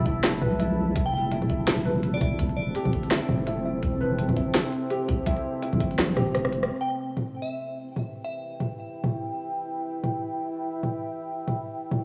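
This tense, heavy half-time drum and bass excerpt opens straight into a drop. A deep, detuned ambient pad holds sustained chords under a felt-muted upright piano playing soft arpeggios, its action noise audible, and a wobbling, up-front bass. A knocking electronic kick and a layered drum kit, with cracking snare, crisp hats, rim clicks and toms, drive the swung groove, the kit tape-warm and forward in the mix. A crystalline synth bell, warbling through phaser and tape echo, enters with a short melody at 1.1 seconds and returns later. The kick stops at 5.9 seconds, and a drum fill and band accent lead into 6.7 seconds, where piano and bass fall away, leaving the dark, moody pad and the kit under the bell's second phrase, all framed by a moderate spring reverb and the character of a home cassette recording.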